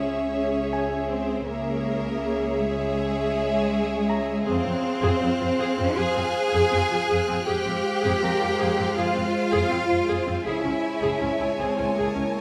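This ominous, mysterious suspense cue at 80 BPM in 4/4 opens on a Db minor chord, with a full string body sounding together from the first moment. Violins carry the melody in the background while a second violin line sits beside it, violas fill in smooth, even accompaniment, and close, focused cellos with distant double basses hold the bass. A mellow French horn section and a very quiet, glassy FM pad with a slow attack and vintage warble sustain chords underneath. A bright, ringing concert harp adds fingerpicked texture from 0.7 s, and at 4.5 s, as the harmony moves to F minor, a high violin line with portamento enters behind the rest. The music returns to Db minor at 10.5 s, all set in a wet recital-hall reverb in this short fragment of a longer score.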